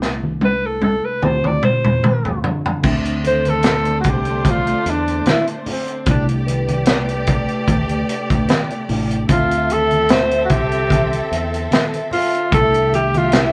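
A lightly swung 74 BPM groove in 4/4 opens with a drum fill on a tight, up-front funk kit, setting up this silky, smooth 1970s-style soul excerpt in D dorian, where a round, dark fingered bass and a worn, slightly out-of-tune tine electric piano in the background support a warm, up-front alto saxophone that takes a solo from 2.8 s as lush, bowed studio strings with vibrato join, while low-tuned congas sit very quiet and close, a metallic vibraphone with soft mallets rings faintly from 3.2 to 8.5 s, and chords such as Dm11 and Dm9 glide past in a cassette-tinged room with wet reverb.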